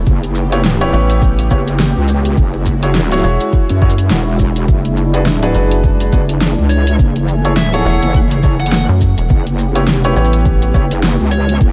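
Gritty and swaggering, this glitch hop excerpt moves at 104 BPM with a 16th-note swing, as a knocking, overdriven electronic kick and a pop drum kit with fat snare, rim click, shaker and hats drive under a heavy, saturated wobble bass and a rubbery, hollow square bass with a bouncy filter pluck. A smooth sawtooth pad with chorus and sidechain pumping sits in the background, while clear baby grand piano stabs pulse through an analog delay over chords moving from A9/F# through E69 and F#m9. At 6.7 s a dark, high-gain lead guitar enters with a distorted melody, all set in a light digital ambience.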